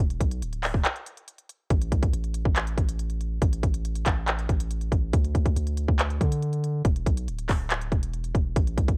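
The recording has the worn, warbling character of old cassette tape, with a warbly pitch drift and very little reverb. This dark, hard-hitting trap cut is taken from a longer piece and moves in a half-time feel in 4/4. A long, sustained 808-style bass sits up front from the very start, its deep sine tone striking with a fast attack before decaying into a mellow tail across a range from D1 to D3. The electronic trap drum kit enters at 0.1 seconds, also up front, pairing a hard-clipped kick with crisp hi-hats and handclaps. A break runs from 0.8 to 1.7 seconds, after which the track settles into its longer closing stretch.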